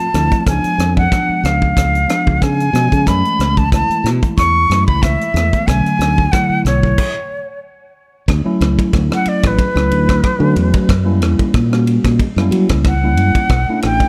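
An airy, warm jazz flute with vibrato opens this funky, bright electric jazz fusion cut over a clean tine electric piano heard through its built-in speakers, joined at once by a growly, direct fingered electric bass and a tight, natural-sounding funk drum kit with crash, ride, hi-hat, rim click and a tight kick. At 92 BPM in a lightly swung 4/4, the band moves through rich minor-ninth and altered dominant chords before a stop at 7.0 s. From 8.3 s the music settles into D major for an expressive, up-front flute solo, all in a light reverb as the excerpt is cut from a longer piece.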